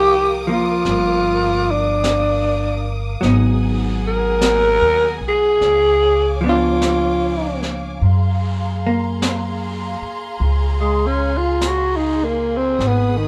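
Romantic and tender, this slow jazz ballad moves at 50 BPM in 4/4 with a lazy swing, cut from a longer piece. A growling tenor saxophone carries the melody up front as a solo, its dark, breathy subtone roughened by raspy grit, with scooped notes, vibrato and a soft attack. Around it, a lush bowed string section holds sustained chords high above with expressive vibrato, while a clean, compressed hollow-body electric guitar adds dark, picked accompaniment until 12.8 s. The upright bass sits up front with a woody, thumpy pizzicato tone, and the brush drum kit enters at 0.8 s with a high-tuned snare and hi-hat, its top rolled off. Light reverb frames the group as the harmony drifts from Cm11 through Abm7 and Db7b9 to a closing Gbmaj9#11.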